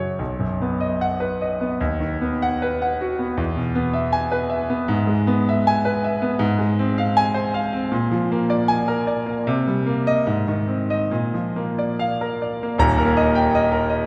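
Warm and lyrical, this romantic character piece for solo piano unfolds in a flexible, rubato 2/4, its clear, up-front concert grand offering deep bass, a smooth vintage tone and short sustain, all bathed in a church's long, wet reverberation, with the harmony shifting to a new key at 6.4 seconds before the music settles on a new section at 12.8 seconds in this fragment of a longer work.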